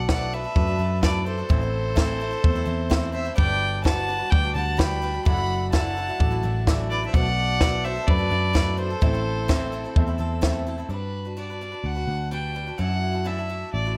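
A straight 4/4 pulse sets this hopeful, nostalgic indie folk piece in motion, cut from a longer work, with a compact cocktail drum kit of tight kick and high-tuned snare sitting dry and up front until about 10.5 seconds. Beneath it, a picked electric bass gives a dark, round, punchy foam-muted tone, also close and prominent, while a picked swing-style acoustic guitar adds a boxy, bright accompaniment throughout. A bowed fiddle carries the melody with a reedy gut-string voice, dressed in slapback echo and plate reverb, as a second, more distant and nasal fiddle plays a supporting line until around 10.4 seconds. A brilliant, woody vintage upright piano sits smoothly in the background, dropping out near 10.9 seconds when the music moves into a new section. The harmony circles through Bm7, Am, Gmaj7 and Dadd9/F#, all held in a light room reverb.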